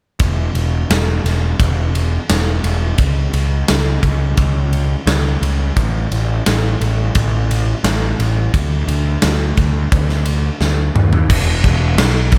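An overdriven, fuzz-soaked picked electric bass sits up front with a punchy, amped low end, joined by a big acoustic rock kit of punchy kick, medium-tuned snare, toms, crash and ride that rings in a bright stone room, in this wistful, hazy shoegaze and dream pop fragment cut from a longer piece, with little reverb and a drum fill from 10.6 to 11.3 seconds leading into a new section.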